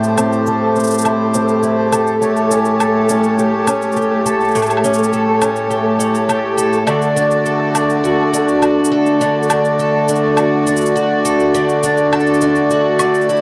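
A picked twelve-string acoustic guitar sits up front with boxy, shimmering, octave-doubled arpeggios, run through a low-pass filter and tape echo with a filter sweep across the whole 13.4-second excerpt, while a reedy, dark accordion holds sustained chords with slow beating and vintage 12-bit sampler grit. This intimate, autumnal folktronica moves at 103 BPM in a straight 4/4, passing from Am7 to A7 at 2.2 seconds and D at 6.9 seconds. Overdriven electronic cabasa and woodblock, re-recorded in a large room, tick alongside a grainy, flickering, detuned texture that rests in the background with its own reverb, all set in a dry, close 1970s-style studio sound with light reverb.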